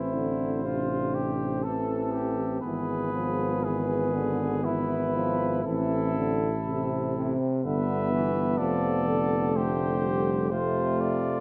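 A brass band opens together on an A minor chord in a slow, lyrical hymn in 3/4 at 61 BPM, taken with a rubato feel. The cornet carries the melody with a warm, smooth top, while a clear flugelhorn sings a second line just beneath it. In the background, a bright trombone with light vibrato and a euphonium fill out the accompaniment. Up front, a mellow tuba with light vibrato and a soft attack anchors the bass, its sound distant and roomy. The harmony moves from A minor through E/G# and back to A minor before settling on F, all within a moderate recital hall reverb, and this short passage, cut from a longer piece, ends at 11.4 seconds.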